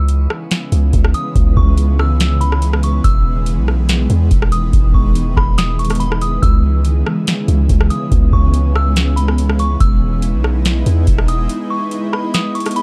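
Atmospheric cloud-rap hip hop in C# minor at 142 BPM with a half-time feel, melancholic and spacious, cut from a longer piece and moving between C#m7 and Emaj7 chords. A shimmering, ethereal pad with an octave-up granular sheen sustains the chords under a delicate, tinkling FM tine bell melody treated with chorus, phaser, filtering and delay, while a deep, sine-like 808-style bass holds long notes until it stops at 11.5 s for a break. Up front, a booming overdriven analog drum machine drives the groove with a deep kick, crisp snare, rim click and metallic hi-hats, all within a dark, dry production.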